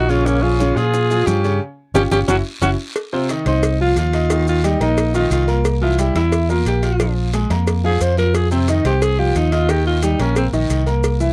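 Sophisticated and sultry, this Afro-Cuban jazz excerpt opens with a growling, gritty alto saxophone carrying the melody up front, joined by a clear, vintage-toned tenor saxophone on a second line that stops at 2.7 seconds, during a band accent that closes the opening passage. From 3.0 seconds the alto takes a raspy, vibrato-laden solo with scooped notes and a smooth top, over polished concert grand piano accompaniment with deep bass and an amped, up-front fingered electric bass. Round, low-tuned bongos and cowbell played with hard hands sit close and dry, while a raspy guiro and grainy, mellow maracas stay in the background of this close 1970s-style studio sound with light reverb.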